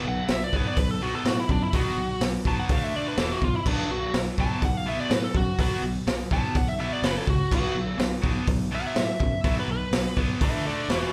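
Aggressive, menacing hard rock in B minor at 124 BPM, this excerpt from a longer piece opens with a cranked stack guitar picking a bright, overdriven riff over a punchy, direct fingered electric bass. A biting lead guitar, also pushed through overdrive, sits up front and carries a picked solo across the whole 11.1 seconds, while a raw garage drum kit enters at 0.3 seconds with a boomy kick, medium-tuned snare, hi-hat and crash, sounding saturated, gritty and rolled-off in a pumping small room. The band plays live together in one room with moderate large studio reverb, as the chords move through B5, D5, E5 and F#5.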